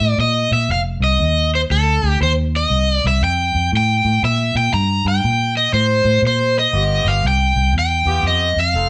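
Gritty and soulful, this blues excerpt swings at 119 BPM in 4/4 over C7, F7 and G7 changes, with a bright, overdriven, picked stack guitar carrying the melody up front above a dark, round, foam-muted fingered electric bass, while a saxophone section adds jazz-style stabs with light vibrato from 6.7 s, the band playing live in one room with moderate studio reverb.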